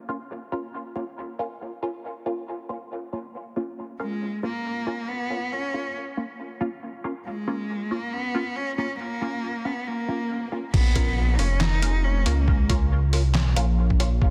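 Deep dubstep at 138 BPM in Bb phrygian, cavernous and brooding, with a half-time swung feel: muted, phased dub chord stabs with chorus and echo open this cut from a longer piece, and a rich, expressive bowed cello with vibrato and portamento enters up front at 4.0 seconds, trailed by dub echo. An electronic swell at 10.0 seconds leads into the drop at 10.7 seconds, where a rumbling, saturated detuned saw bass arrives with a gritty, thumpy overdriven kick and a pitched-down sampler-style trip hop kit of snare, hi-hat, handclaps and crash cymbal. The sound is dense and heavily limited, with light reverb.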